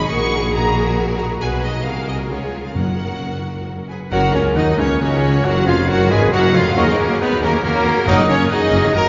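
A clear, intense violin section carries the melody of this graceful, spirited romantic orchestral passage in F# major, a fast 136 BPM movement in 3/4 with rubato, over a lush, rich second violin line, rich violas, very quiet cellos, a smooth double bass section and a mellow tuba. Hard-mallet timpani enter at 2.8 seconds, a clear oboe and dark trumpet stabs arrive at about 3.9 seconds, and from about 4.1 seconds a tight French horn section sustaining chords, a mellow clarinet, an airy flute ensemble and a very quiet bassoon join, all bathed in a long cathedral reverb.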